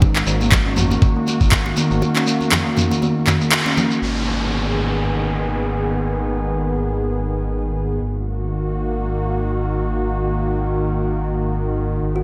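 Earthy and spiritual, this afro house excerpt moves at 120 BPM in G# minor with a swung sixteenth-note feel, built on a smooth, slow-blooming analog pad with chorus, a deep, rumbling detuned saw bass holding G#, and woody, hollow kalimba arpeggios flecked with vintage 12-bit grit and digital delay, all three pumping against the sidechain. Up front, a knocking electronic kick and a produced afro-pop kit with handclaps, filtered toms and snare, and gated reverb drive the opening with ringing, close congas and a grainy shekere in the background, and the band hits an accent at 3.5 s. The rhythm section then falls away as a downlifter runs from 4.0 to 8.0 s beneath the pad and bass, all set in a lush hall and a bright 1980s-style digital sheen.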